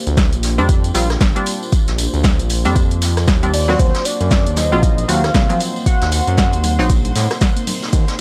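An up-front, overdriven electronic kick drives this relaxed, warm deep house excerpt at 116 BPM with a 16th-note swing, joined by a smooth detuned synth bass, punchy layered drums, a brushed kit in the background, a jingly tambourine, muted filtered dub chord stabs with analog delay, a deep, moody ambient pad moving from Bb69 to Ebm6 at 3.5 seconds, a velvety synth lead with tremolo and tape echo entering at 3.5 seconds, and a silky string machine with quiet bongos and congas arriving at 4.2 seconds, all under gritty hardware saturation and vinyl crackle.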